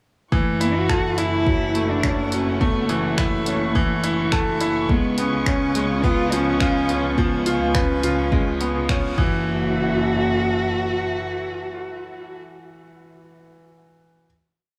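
Piano and strings electronica in F# minor at 105 BPM, this short, complete piece feels intimate and cinematic, moving from F#m7 to C#7 and back to F#m7. A bright concert grand piano sits up front with audible action noise, playing an arpeggiated 12-step loop that drifts against the bar through a digital delay, and it outlasts every other part, ringing on until 14.3 seconds. A dark cello sings a motif-based melody of arching phrases with vibrato and portamento, its top smooth and expressive. Beneath it, a veiled, con sordino string section holds a lush, distant pad in the background, while a chamber double bass section bowed sul tasto sustains soft roots, and both strings and bass breathe with sidechain pumping. A deep, tape-warm electronic kick drives a four-on-the-floor pulse, joined by a restrained deep house kit of closed hi-hat and finger snaps, with a band accent at 8.9 seconds before the drop gives way to a final hit at 9.5 seconds. 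Light reverb and small room ambience keep the whole sound close and personal.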